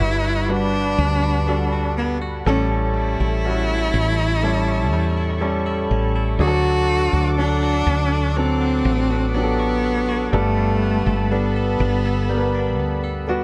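A clear, close cello with vibrato carries the tender, emotional melody of this pop ballad excerpt, over a round, punchy fretless electric bass up front, an intimate concert grand piano with audible action noise and long sustain, a smooth, detuned analog pad with chorus in the background, and a bright, twangy clean electric guitar playing arpeggios through phaser and tape echo, set in a small room ambience as the chords move from Gmaj7 through A7 and D to Gadd9.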